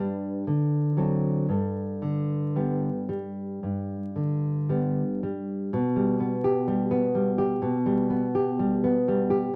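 Vinyl crackle and a moderate studio ambience frame this brief, lyrical romantic fragment cut from a longer piece for two nylon-string guitars, where a dark, thumb-plucked melody sits in the background until 5.2 seconds over a full-bodied, deep classical accompaniment played up front with a warm tone and a free rubato feel in 4/4.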